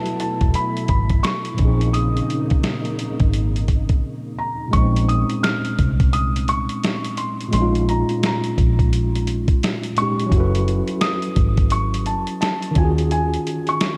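A swung 86 BPM lo-fi hip hop groove in 4/4 sets a hazy, nostalgic mood in this fragment, with a pitched-down, muffled sampler-style drum kit and its thumpy kick up front, a dark, round, foam-muted fingered electric bass entering at 0.4 s, a worn, slightly out-of-tune tine electric piano with light overdrive carrying the accompaniment, a soft, intimate, felt-muted upright piano playing a high melody through tape echo, and mellow sawtooth string-machine violas with ensemble chorus holding sustained chords until a brief break ends at 4.7 s, in a dreamy mix soaked in church reverb and cassette tape.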